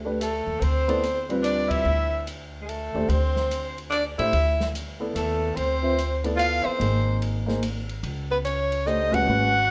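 Set in a moderate large-studio reverb with a dulled top end, this short, hypnotic and cool modal jazz fragment in D dorian swings at 145 BPM in 3/4: a mellow, up-front soprano saxophone carries the melody with light vibrato and scooped notes over a raspy, growling tenor saxophone second line, warm grand piano accompaniment, woody pizzicato upright bass and a dark jazz drum kit with a boomy kick, while the band hits accents at 1.6 and 9.1 seconds and the harmony moves from D9sus4 through G#add9 to C#7sus4 at 8.0 seconds.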